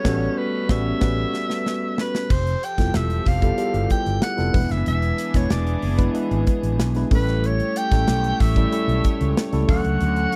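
A distant, softly attacked soprano saxophone carries the melody with vibrato and a slapback echo in this nocturnal, urban slice of polished 1980s jazz-funk pop at 93 BPM in a straight 4/4. A worn, slightly out-of-tune tine electric piano with analog chorus sits up front beside a growly, bright fretless bass and an airy acoustic drum kit with a tight kick, while a reedy, bowed string section holds sustained chords in the background over harmony moving from A13 through Fmaj9#11 to Dmaj7. An opening band accent and a drum fill from 1.0 to 2.3 seconds lead into the next section, and the recording has a dry, close studio sound.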